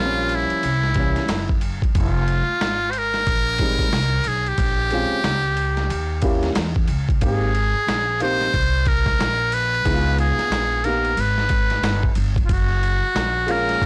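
A blown-out, overdriven recording with vinyl crackle and light reverb frames this mellow, smoky jazz-hop excerpt at 91 BPM, swung in 4/4 and cut from a longer piece. A buzzy, breathy trumpet with a metal mute carries the close-miked solo melody up front, with light vibrato and scooped notes, over a dark concert grand piano's mellow chords and a woody pizzicato upright bass with transformer saturation. A gritty, compressed boom bap sampler-style kit with a thumpy kick, snare, hi-hat and ride enters at 0.3 seconds, while the harmony moves from Gm7b5 and C7b9 into a longer passage that starts on Fm at 1.9 seconds and settles on Gbmaj7.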